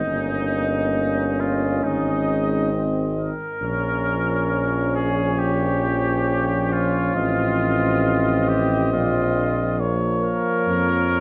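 A wet recital hall reverb, with about 1.6 seconds of decay, surrounds this classical brass quintet passage, cut from a longer piece. At a stately 68 BPM in straight 4/4, tuned to A4 = 442 Hz, the mood is triumphant and noble. All five players sound together from 0.0 to 11.2 seconds. The cornet carries the melody with a light vibrato. Beneath it, the trumpet's second line sits up front yet roomy and distant, also with a light vibrato, while the French horn adds a gently trembling accompaniment. The smooth-topped trombone stays in the background, and the tuba's warm bass is placed up front with a distant, roomy quality, anchoring a progression that moves from Eb7/G through Ab, Bbm and F7/A, back to Bbm, before settling on Db/F.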